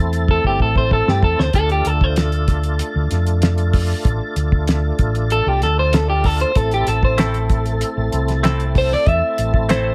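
A lightly overdriven tonewheel organ, turning through a slow rotary speaker with chorus vibrato, opens this mournful, soulful straight-eighth soul blues at 96 BPM in A minor, alongside a round, punchy fingered bass and a dry, thuddy cloth-damped drum kit whose fill runs from 0.3 to 1.5 seconds. Up front, an electric guitar through a small old amp carries the melody with a slightly broken-up, picked tone over chords moving from Am to Dm and back. At 7.2 seconds, a bright, twangy direct-recorded clean guitar adds compressed stabs colored by spring and plate reverb.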